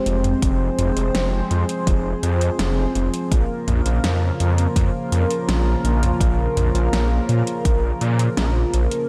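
Synthwave with a driving, nostalgic mood, this short excerpt moves in a straight 4/4 from an Fmadd9 chord to Bbm at 3.3 seconds. A chorused pulse-width pad sits up front with sustained chords, its shimmering, retro tone built from pulse, sawtooth and triangle waves over a sub octave, and sidechain pumping gives it a rhythmic push. Beneath it, a detuned saw bass in unison supplies a thick, saturated low end with a fast attack and chorus. An overdriven pop drum kit contributes a fat snare, metallic hats and toms, while a punchy electronic kick, also overdriven, enters at 0.4 seconds and stops at 7.8 seconds. Both drum parts have a layered, produced character, re-recorded in a small room, and the mix is soaked in a lush hall reverb that lends a dreamy haze.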